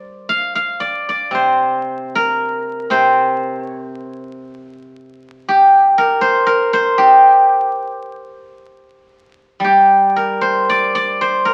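Rubato in a slow 2/4 around 55-61 BPM, this elegant, longing fragment of a longer Chinese traditional piece in the G yu mode features a solo steel-string zither, played up front with fingerpicks and ranging from C3 to F5. Its bright, silvery, ringing tone sits in a modest small-room reverb, heard through the crackle of a very old 78 rpm record, with a new section beginning at 9.6 seconds before the recording stops at 11.5 seconds.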